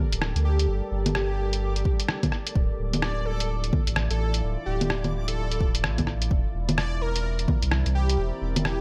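Swung sixteenths in 4/4 drive this ghostly, nocturnal future garage excerpt, where a muffled, pitched-down sampler-style kit of bongos, hi-hat and rim click sits up front beside a round sine sub bass, and a deep electronic kick joins at 1.9 s before dropping out at 7.6 s. A moody, detuned sawtooth pad holds sustained chords through chorus and its own reverb, pumping alongside the sub bass, while a faint reversed, granular texture swells softly on high. Over the top, an airy, dreamy lead with gentle vibrato drifts through cassette-tape colour and tape echo as the harmony moves from Gmadd9 to Dmadd9 and on to C7/E, all in a lightly reverberant space.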